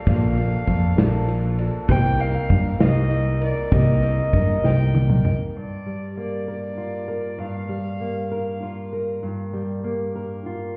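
A distant, reedy fiddle touched by tape echo carries the melody over a dark, felt-muted upright piano and a shimmering, octave-doubled twelve-string acoustic guitar in this wistful, stirring indie folk excerpt in G minor, moving through Bbmaj7 and Cm7 at 65 BPM in a straight 6/8. A natural country drum kit with a punchy kick, an up-front fingered electric bass and a very quiet, grainy egg shaker fill out the building arrangement, with a drum fill from 4.6 s before the rhythm section falls away and the piano and twelve-string stop at 5.6 s. From there a fingerpicked steel-string acoustic guitar with fresh strings and finger squeak joins the fiddle on Gm7, the whole sound heard as if muffled through a wall in a stone room.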